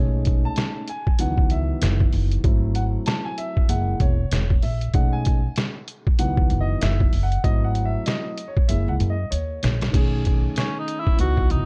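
Nocturnal and smoky, this jazz-hop fragment moves at 96 BPM with a swung 16th-note feel, as a dark, long-sustaining baby grand solos over rich chords such as B13 and C#m11 alongside a woody pizzicato upright bass. A gritty, pitched-down, compressed sampler-style kit sits up front from 0.3 seconds, with a thumpy kick, medium-tuned snare, hi-hat and crash, and it plays a fill leading into a restatement of the opening section. At 10.6 seconds a mellow cor anglais enters with a smooth classical-style solo, all wrapped in small-room reverb and a dark, warm production.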